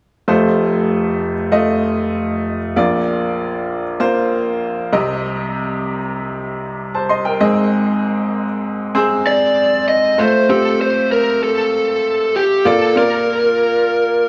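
Uplifting and warm, this pop piece opens at 0.3 seconds on a brilliant, woody upright piano with long sustain, carrying the accompaniment up front across a broad register. At 9.3 seconds an electric lead guitar through a small cranked amp joins with a dark, overdriven, picked melody, sitting forward and a touch louder than the piano as the music moves into a new section at 10.2 seconds. A moderate plate reverb surrounds the pair with a lingering sense of space.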